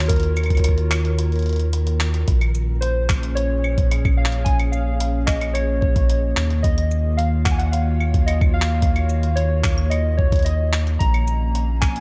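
IDM cut from a longer piece, cerebral and intricate at 110 BPM in Bb minor, where warbling, nostalgic lo-fi synth keys with chorus and tape echo carry the melody over a detuned, full-bodied tape-like pad with built-in reverb, a round, deep analog bass sitting up front, a gritty, pitched-up jungle sampler-style kit of claves, handclaps, hi-hat and shaker, and a thumpy electronic kick that drops out from 1.7 to 2.3 seconds while a very quiet flickering, grainy texture surfaces between 0.7 and 2.3 seconds, all moving between Ebm9 and Bbm7 in a dark, lightly reverberant mix.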